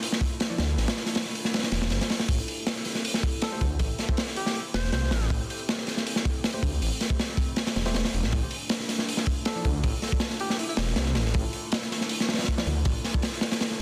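A crunchy, gritty breakbeat kit with a tight kick and rolled-off top drives this nostalgic, raw drum and bass and jungle excerpt at 159 BPM, joined at 0.6 s by a thick, menacing detuned saw bass, while a dark, warbly tape-like pad with chorus and lo-fi sampler grit holds Dmadd9 and Am7 chords in the background, a worn, slightly out-of-tune tine electric piano drops in very quiet stabs, and from 3.4 s a clear alto saxophone sings short jazz-style phrases with vibrato and dub echo over a dense, heavily limited master.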